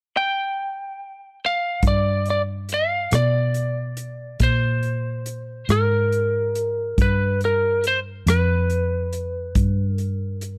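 Slow blues in 12/8, soulful and mournful, where a lightly driven, slightly broken-up lead guitar sings the melody alone from 0.2 seconds until a dark, round, foam-muted vintage fingered bass and a natural country drum kit with punchy kick, hi-hat and rim click enter together at 1.8 seconds over a G7#9 chord, the whole cut from a longer piece and captured close and dry in a small room with a 1970s studio character.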